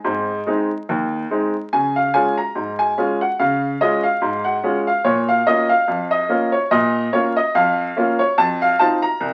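A lightly swung 2/4 lilt at 72 BPM carries this jaunty, playful ragtime snippet in Db major, where a bright, woody upright piano plays solo and up front from C2 to Bb5 through chords moving from Ab to Db, Bbm and F5, set in a small wet room and heard through the crackle of a very old 78 rpm record.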